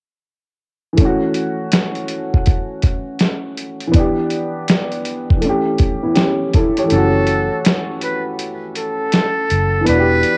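Hazy cassette warmth and light digital ambience frame this reflective lo-fi hip hop excerpt, where a dark, woody upright piano with audible action noise and a gritty, overdriven sampler-style drum kit enter around 1.0 seconds over swung seventh chords, before a buzzy, breathy trumpet with a metal mute and a round, foam-muted electric bass join at 6.9 seconds as the kick drops out.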